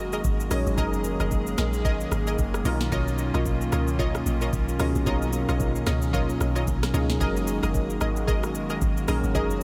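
A relaxed amapiano excerpt at 112 BPM in F# major opens with a worn, slightly out-of-tune tine electric piano through a combo amp, a hollow, flute-like pad and a punchy, full-bodied chord stab with chorus and tape echo, all over a deep, round log drum bass with a dark, percussive decay. From 0.1 s a smooth electronic R&B kit joins with a knocking kick, sharp snare, rim click, shaker and metallic hats, swung on the 16ths. The harmony moves from F#69 to Bmaj9#11 at 2.7 s and back at 7.2 s, all in a light reverb.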